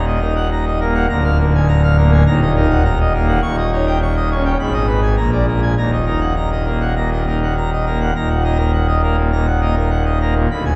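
A solo pipe organ on full organ opens this stormy, dramatic classical toccata, its mixtures giving a majestic, brilliant sound with romantic voicing across a span from D1 up to Db6. The harmony moves through a minor-key progression, and a new section arrives at 8.2 seconds. The organ sits in a wet church reverb, heard from further back in the room, in this fragment cut from a longer piece.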